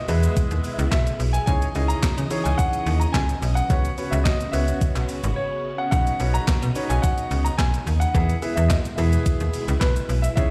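A euphoric, upbeat dance-pop excerpt in which a polished grand piano with delay carries the melody over a clear concert grand's intimate accompaniment with audible action noise, a snappy, metallic FM slap bass up front, a thumpy sampler-style 12-bit drum machine of kick, snare, hi-hat, handclaps and shaker, and a swirling vintage string machine with chorus and phaser in the background, the accompanying piano, bass and strings pumping with sidechain, a barely audible downlifter opening the first 1.5 seconds, a brief break at 5.4 seconds, and stone-room reverb giving the mix the sound of a big system in a bare room.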